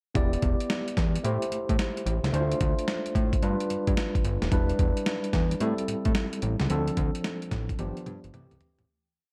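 Confident and punchy, this short new jack swing R&B piece in D dorian moves at 110 BPM with a hard 16th-note swing, as a gritty, overdriven sampler-style drum kit with a thumpy kick, a medium-tuned snare, hi-hat and toms drives up front beside a fat, saturated analog bass playing a bouncy synth-funk line with muted ghost notes and chromatic approach notes, while a clean tine electric piano holds drop2 chords with grace notes over an Em7-Am7-Dm7-G7 cycle that lands on C6, all in a dark production with light reverb before a drum fill at 7.8 seconds closes the fade-out.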